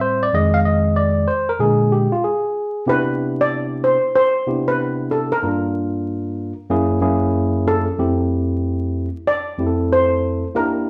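Hip hop with a smooth, relaxed swing, this excerpt opens with a clean, up-front tine electric piano playing alone, moving through chords like Fm7 and Bb7. At 2.9 seconds a dark, shimmering steel pan, struck with medium rubber sticks, joins with the lead melody in a narrow upper register while the piano continues underneath through Cmaj7, Gm7, F#9 and Fmaj9. The band plays live in one large studio with a moderate reverb, and a layer of vinyl crackle gives the sound a dusty, intimate character.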